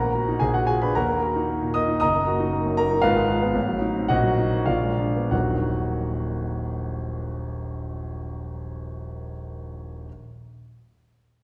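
Passionate and agitated, this short excerpt from a classical virtuoso piano study in Eb minor moves in a rubato 2/4 at 91-118 BPM, with a clear, up-front concert grand playing solo from Eb1 to Eb6, its deep bass and long sustain bathed in the 1.8-second reverb of a scoring stage within a dark production, as chords such as Adim7 and Bb7b9 drive through a slowing stretch from 2.5 to 5.3 seconds before resolving onto Eb minor.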